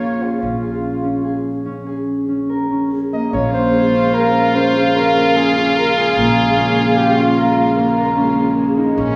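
Contemporary chamber music in 7/4, pensive yet urgent, where a punchy, close-miked flugelhorn with vibrato carries the melody until 7.8 s over a nasal, metallic stopped French horn second line, ringing thumb-plucked harp arpeggios up front and a woody pizzicato upright bass, while a dark, soft-attack bowed string section enters in the background at 3.3 s, set in a wet recital-hall reverb in this excerpt from a longer piece.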